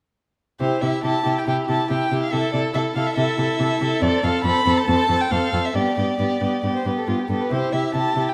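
A quick, graceful classical-period movement for string quartet, cut from a longer piece, with a cheerful character in a straight 4/4. A dark, woody first violin with light vibrato carries the melody over a warm, distant second violin line and a soft-attacked viola accompaniment, while an up-front cello anchors the bass with rich, expressive portamento. A recital hall reverb of 1.7 seconds surrounds the four bowed players, who all begin at 0.6 seconds and close on a C chord at 7.5 seconds.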